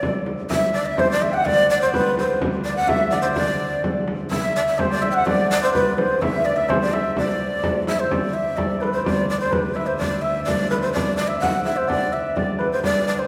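A rustic, festive medieval dance in D mixolydian moves at 126 BPM in a straight 2/4, heard as a short cut from a longer piece. A breathy, end-blown shakuhachi carries the melody up front between A4 and G5, its soft attack, chiff and unsteady vibrato giving the tune a warm, human wobble. A shimmering hammered dulcimer rings out a second line alongside it, while a deep, large frame drum sits up front with a vintage, band-limited thud. Far back, a clear, reedy viola da gamba holds a bowed D2 drone with light vibrato and a gut-string tone. A mellow, airy alto recorder adds a very quiet, distant second line from 0.5 to 7.8 seconds, dropping out shortly before the second section begins at 8.1 seconds. The whole ensemble sits in a reverberant church or concert hall whose 1.6-second decay gives it a spacious, wet glow.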